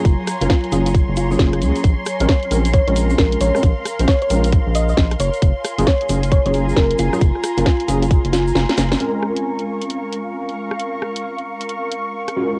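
A bouncy, soulful slice of two-step UK garage, swung and cut from a longer piece, with a home-cassette haze over its compact booth sound. A rubbery, hollow square bass sits up front alongside a tight, layered electronic kick that was bounced to tape, while a garage kit adds hi-hat, rim click and a cracking snare, with a grainy egg shaker tucked in the background. Over Gbmaj9 and Bbm9 chords, a round, tine-like synth pluck with a warbling, vintage FM character carries the melody, and a clean tine electric piano punctuates with chorused stabs fed through tape echo. Behind them, a silky string machine holds high sustained chords and an ethereal, airy pad spreads a reverberant bed, both pumping with sidechain compression. A drum fill arrives at 8.3 seconds, the kick drops out at 8.6 seconds, and a band accent at 8.9 seconds leads into a closing stretch where the bass, pluck and shaker have finished, the kit plays on to 12.3 seconds, and the keys, strings and pad carry on to 12.6 seconds.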